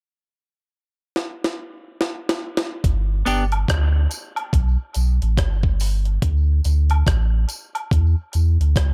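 This hazy, spacious dub reggae excerpt opens with a sampler-style breakbeat kit that enters at 1.2 seconds with a fill. The kit is compressed and pitched up, with a gritty edge, a thumpy kick, a high-tuned snare, hi-hat and rim click sitting up front, all swung on the sixteenths at a slow 71 BPM. At 2.8 seconds a deep, round sine sub bass arrives with a fast attack and long sustain, mellow and prominent as the harmony moves through G, D5 and C#m. At 3.3 seconds a clean, picked semi-hollow electric guitar sounds only briefly, lightly chorused and thrown into a dub echo. Tambourine and woodblock join at the same point, quiet, acoustic and high-passed in a small-room sound, with their own dub echo trailing behind. The mix is dry, with little reverb, leaving plenty of open space between the parts.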